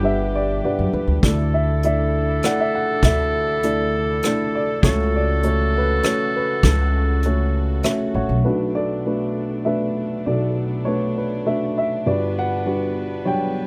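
A dark, mellow upright piano carries the melody from the start, joined by a soft-edged clarinet second line, floating bowed chamber strings and a woody, growly pizzicato upright bass in this melancholic, intimate acoustic folk-pop ballad in B minor at 100 BPM in 3/4, cut from a longer piece. Soft brushes, hi-hat, punchy kick and rim click enter at 1.2 seconds over chords moving from Gmaj7 through Dsus2 and F#m/C#. The piano plays a fill from 7.5 seconds as the drums and clarinet drop out around 8 seconds, and the bass stops at 8.4 seconds. The piano and sul tasto strings then carry the repeated section alone over Bm7 and Gmaj7, heard close and detailed with little reverb.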